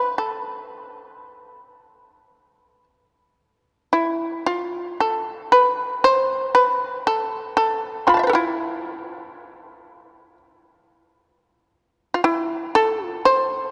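Solitary and meditative, this short excerpt of Japanese traditional chamber music features a lone acoustic shamisen, up front and plectrum-plucked with a percussive, buzzing, fretless tone, moving in free rubato at around 53-60 BPM in 4/4 through A hirajoshi (tuned to A4 = 443 Hz) across a range from E4 to C6, shifting into a new section at 3.4 seconds and bathed in a long cathedral reverb within a dark, warm production.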